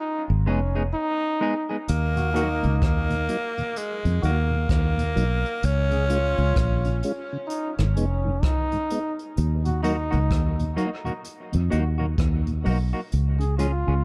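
Darkly produced with light reverb, this meditative, hypnotic dub reggae excerpt opens on a brilliant trombone second line, a round, foam-muted fingered electric bass and clean picked electric guitar, before a raspy, gritty tenor saxophone carries the echoing melody from 1.9 to 7.3 seconds over up-front brushed drums with a boomy kick and rim clicks, while a mellow, lightly overdriven tonewheel organ with slow rotary speaker sits in the background and the guitar returns at 9.8 seconds.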